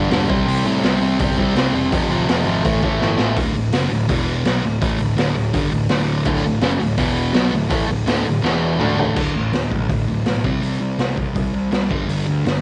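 This rowdy punk rock clip has the dull, lo-fi sound of a home cassette recording, with a light reverb and the highs rolled off above 10.3 kHz. It moves at a straight 166 BPM in 4/4 and settles into D major from 3.4 seconds. A raw garage drum kit sits up front in a small room, with a punchy kick, a medium-tuned snare, hi-hat, toms and crash cymbal. The kit sounds gritty and saturated from the tape, and it drops in fills at the ends of the first two sections. A sludgy, overdriven guitar picks a thick riff all the way through. A bright, cranked stack guitar joins it on the opening riff and returns at 6.3 seconds. Underneath, a fuzzed, picked electric bass adds a punchy low growl from the background, giving the rebellious track a scrappy, rough-edged drive.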